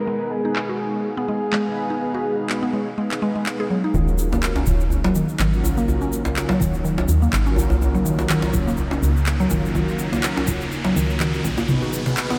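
An expressive, gliding portamento lead with vibrato opens this spiritual, earthy afro house cut at 124 BPM in Eb minor, over an ethereal, airy pad, dark detuned synth brass stabs with a cassette-tape tint, and mallet-like woody FM pluck arpeggios, with electronic afro-pop drums carrying handclaps and toms settling in at 0.6 s and the lead dropping out at 3.4 s. At 3.9 s a soft, round FM bass, a medium-tuned acoustic djembe and a grainy, close egg shaker join as the harmony moves from Abm to Ebm7, launching a build-up with a filter sweep, and an electronic riser climbs from 6.8 s. The swung groove sits in a dreamy mix soaked in huge ambient reverb, with diffuse delays trailing the lead, brass and pluck.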